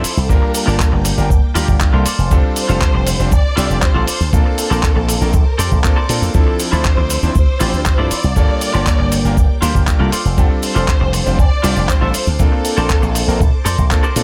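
Nu-disco at 119 BPM with a cosmic, sensual mood, this brief cut sets a vibrato-rich symphonic violin section with tape echo over a clangy electric grand piano and filtered slap bass, both pumping against a thumpy, gritty kick that enters at 0.3 seconds, while a chorused semi-hollow guitar riff, a very quiet sawtooth string machine, tape-dusted sampler drums with handclaps and hi-hat, and a background cabasa fill out a dry, up-front mix moving through Gm7, F6, Bbmaj9 and Dm9.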